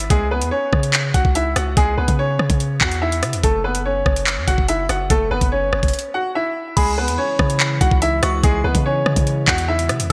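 Cold, dark drill hip hop with a half-time feel, cut from a longer piece. A brilliant, woody upright piano leads up front over a deep, sine-toned 808-style bass and an electronic drum kit with a knocking kick, metallic hats, handclaps, rim clicks and crash, all treated with gated reverb. After a break at 5.9 seconds, a glassy FM synth bell with chorus, tremolo and digital delay enters at 6.8 seconds, and a warbling, lo-fi, detuned pad joins in the background at 7.2 seconds, all set in a lush hall reverb with bright 1980s-style digital production.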